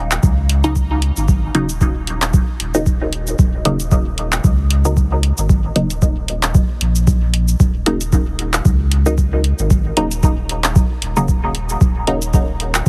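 A swung 4/4 pulse at 114 BPM drives this short dub techno excerpt in Eb minor, resting on a single Ebm7 chord throughout, with a nocturnal, deep mood. An up-front electronic kick drum with a deep analog character arrives at 0.2 seconds, just after a punchy analog drum machine supplying cabasa, handclaps and hi-hat, both re-recorded in a small room. Beneath them, a round, mellow sine sub bass sits from the very start, sustained and pumping with sidechain compression. From 0.6 seconds a filtered dub chord stab adds muted yet bright sawtooth and pulse-wave tones, detuned and wave-folded, with a quick filter pluck and short decay colored by phaser and dub echo. The sound is dry and heavily compressed, with a dense, radio-like multiband squeeze.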